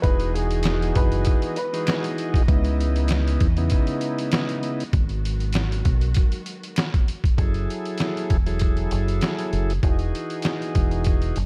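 Dark, warm studio reverb and a bed of vinyl crackle frame this gritty, dark boom-bap hip-hop fragment, cut from a longer piece and moving at 98 BPM in 4/4 with a light swing on the sixteenths. A compressed, pitched-down, sampler-style trip hop kit sits up front, with a thumpy kick, a medium-tuned snare and hi-hat, and a round, deep dub fingered electric bass plays beside it throughout. A mellow, woody upright piano with long sustain and slapback echo carries a brief melody only for the first 2.0 seconds, while a reedy, lightly overdriven tonewheel organ with key click and a slow rotary speaker provides accompaniment. Distant, lush bowed strings with vibrato hold sustained chords in the background until 7.4 seconds, and a close, dry finger snap adds human percussion far back in the mix. The harmony in F# dorian moves from Emaj9 through C#m9 and G#m7 to F#m9 before returning to Emaj9.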